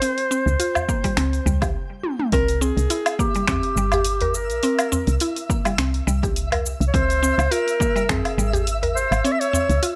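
Organic downtempo at 104 BPM in C phrygian dominant, hypnotic and earthy, where a subtoned jazz clarinet with vibrato and sampler grit carries the up-front melody over bright, woody FM pluck arpeggios with chorus and delay, a dark, round FM bass with sidechain pumping alongside an overdriven, punchy electronic kick, a deep house kit of snaps, hi-hat, shaker, toms and woodblock, a small saturated udu and a twinkling granular shimmer in the background, all in a dry, gritty hardware sound, with a brief stop from 1.7 to 2.3 seconds broken by a drum fill at 2.0 seconds.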